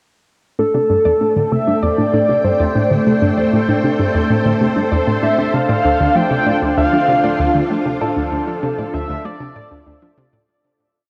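At 0.6 s, four parts begin together in this cosmic, expansive piece of sequencer-driven space music: a shimmering pulse-width lead, a lush string machine ensemble, a warbly dusty pluck and a round analog pluck. The dark, nasal dusty pluck spins arpeggios on a 10-step loop that drifts against the bar under a filter sweep. The bright analog pluck repeats a low 5-step riff that drifts against the bar in the same way. Over the string machine's slowly shifting, sustained chords, which move from Am7 to Dm7, the mellow lead sings call-like motifs with vibrato, chorus and delay. From 3.9 s, a very quiet bubbling texture holds a high, resonant note through random filter steps. A huge, wet reverb and the pitch drift of worn cassette tape wash over the whole recording, and a fade-out begins at 7.2 s.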